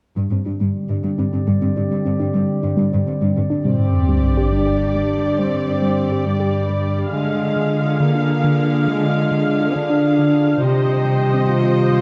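A dark, warm scoring-stage reverb surrounds this brooding, relentless cinematic cue in 6/8, cut from a longer piece. From the opening, a soft, ringing harp-like synth pluck plays arpeggios in the background under a moving filter sweep and notch, with chorus and digital delay, while a lush cello section holds down the bass with intense vibrato and a smooth top. A deep, ominous drone rumbles beneath in sustained chords, its slow attack and long release blurring into its own built-in reverb. At 3.6 seconds a mellow, distant French horn section enters with sustained chords, and at 3.7 seconds a huge sub drop hits as a close, even viola section adds smooth, vibrato-rich accompaniment. The harmony moves from Gsus4 through Ddim to Cm, keeping the mood tense and unresolved as the cue ends.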